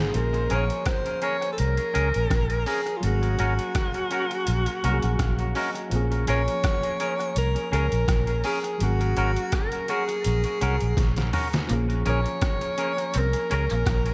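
Smooth and longing, this short cut from a longer lovers rock reggae piece sways in 4/4 with a gentle swing on the sixteenths, moving between Bbm7 and Ab9sus4. Up front, a close-miked alto saxophone carries the melody in a jazz style, its bright tone marked by vibrato and scooped notes and trailed by dub echo. A worn, slightly out-of-tune tine electric piano plays barky, lightly overdriven accompaniment through its built-in speakers and adds a fill at 4.5 seconds, while a dark, round, foam-muted fingered electric bass sits low and prominent in the mix. The trip hop sampler-style drum kit sounds compressed, pitched down and gritty, with a thumpy kick, medium-tuned snare, rim clicks, hi-hat and toms, overdriven and re-recorded in a large room, plus dub echo and a fill at 11.0 seconds. A clean, twangy, picked electric guitar punctuates with spring-reverbed stabs from 0.5 seconds, and at 11.7 seconds a second twangy guitar slips in behind with a chorused riff, both guitars wet with dub echo. 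Light digital ambience wraps the whole in a soft sense of space.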